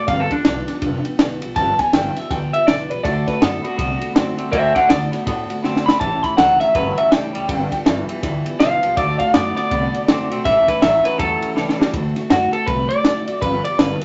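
Retro and upbeat, this swung rockabilly excerpt at 162 BPM in D mixolydian rides a G7, D7 and A7 progression, led by a bright, slightly broken-up, lo-fi electric guitar through a small old amp that plays an up-front solo until 11.9 s, backed by a full-bodied picked dreadnought acoustic with finger squeak, a thumpy, woody pizzicato upright bass on gut strings, and a dark, smooth cocktail kit of tight kick, ride and high-tuned snare with brief fills, while a compressed, fingered twangy electric guitar riff joins at 3.0 s, the whole mix sitting in a moderate studio reverb.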